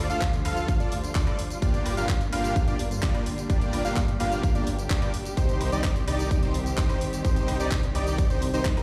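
Powerful and anthemic, this festival progressive house passage in G minor drives at 128 BPM in a straight 4/4, with a punchy, up-front electronic kick arriving at 0.2 seconds beneath a tape-warm house kit of handclaps, hi-hat, tambourine and woodblock, while a huge, dense compressed supersaw riff with cassette grit and tape echo, bold mellow unison lead arpeggios, a lush chorused detuned saw bass and a veiled, muted string section holding dark sustained chords all pump to the sidechain over a Dm, Gm7 and Cm progression, the whole mix sounding like a big sound system playing in a bare room with large reverb.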